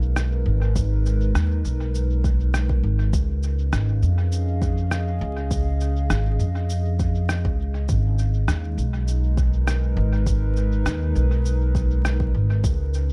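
Ambient dub at 101 BPM in G# dorian, spacious and meditative, built on a woody, dark upright bass played pizzicato up front through the whole excerpt, a warbling, nostalgic pad of detuned, ring-modulated sustained chords soaked in chorus and its own reverb, a muffled, pitched-down electronic rim click and cabasa trailing dub echo from 0.2 seconds, and a deep, tape-tinged electronic kick sitting in the background from 0.8 seconds, all over a G#m chord in an echo-heavy mix dusted with vinyl crackle.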